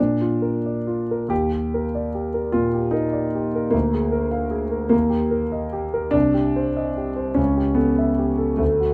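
A concert grand piano opens this brief romantic character piece, heard up front and intimate, with its action noise audible beneath the notes. The mood is brooding and bittersweet, moving in a slow, rubato 6/8 at about 49 dotted-quarter beats per minute. The piano spans a deep bass up into the middle treble, and close, detailed microphones with light reverb keep its sound natural and present. The harmony begins on Bb and moves through Ebmaj7, Bb7/D, Eb and Cm before reaching A7/C# at 7.4 seconds. Cut from a longer work, the passage lasts 8.9 seconds.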